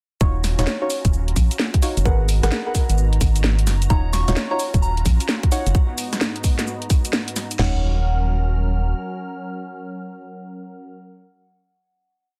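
A hollow, organ-like FM bass sits up front in this late-night, bouncy two-step UK garage piece, playing a dark, skipping, syncopated line. Two layered electronic drum kits carry the swung groove: one delivers a tight two-step kick, cracking snare, floor tom and crash, while the other adds skipping closed and open hats, shaker, snares and rims, both re-recorded in a small room. Deep, mellow chord stabs with a filter sweep, subtle chorus and dub echo move one shape in parallel over alternating Ebm9 and Abm9 harmony. Alongside them, a smooth, detuned sawtooth pad holds sustained chords with chorus and sidechain pumping. From 3.9 seconds a soft, pure synth bell with a gentle, vintage warble repeats a riff, trailed by dub echo. The drums stop around 7.6 seconds, and the pad, stabs and bell ring out a final chord to 11.0 seconds in a dry, dense, heavily limited master.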